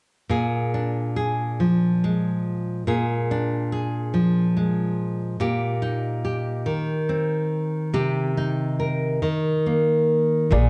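Intimate and hopeful, this folk excerpt in 6/8 is carried almost entirely by a full-bodied, fingerpicked nylon-string guitar with audible finger squeak, moving through Bb7, Eb6/Bb and Cm7 before a mellow, slightly detuned upright piano with audible action noise and a thumpy pizzicato upright bass enter together at 10.5 seconds, all set in a dark production with moderate recital hall reverb.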